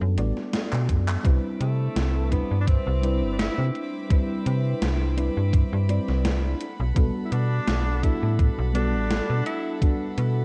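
Dreamy and woozy, this vaporwave excerpt sets a round, dark FM electric piano, bathed in lush chorus and tape echo, over an up-front snappy, metallic slap-like FM bass and a thumpy electronic kick, while a gated 80s digital drum machine adds handclaps, hi-hat and gated-reverb snare; a clear studio string section drifts in at 1.2 seconds with soft bowed chords, a tenor saxophone enters at 1.6 seconds with a smooth jazz melody marked by vibrato, scooped notes and tape echo, and the mix sits in light digital ambience and cassette-tape haze as the harmony moves from Gmaj9 to Cmaj9 and back.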